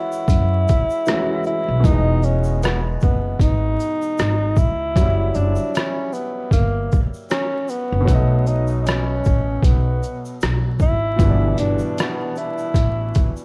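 A breathy tenor saxophone carries the melody up front in this nostalgic, dreamy lo-fi hip hop piece at 77 BPM with a swung feel, its mellow subtone, vibrato and scooped notes softened by a low-pass filter over an Emaj7, F#7(no3), B7 and G6 progression. A bright, vintage upright piano, dulled by cassette tape and filtering, supports it, while a woody, growly pizzicato upright bass and a thumpy, muffled, overdriven sampler-style trip hop kit of hi-hat, kick, rim click and shaker enter at 0.3 seconds. A grainy egg shaker sits distant in the background, and the whole excerpt carries light small-room reverb, worn warbling tape with pitch drift and vinyl crackle.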